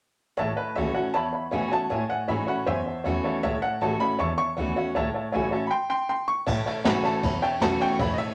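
A straight, upbeat retro rockabilly groove in 4/4 opens with a jangly, detuned honky-tonk upright piano, a bright picked steel-string acoustic guitar and a thumpy pizzicato upright bass with gut strings, while a clear, intimate upright piano carries the melody with audible action noise and short sustain, and a jazz brush drum kit with dark cymbals, a high-tuned snare and a punchy kick joins at 6.5 s for the closing stretch of this cut from a longer piece, all set in a wet studio reverb.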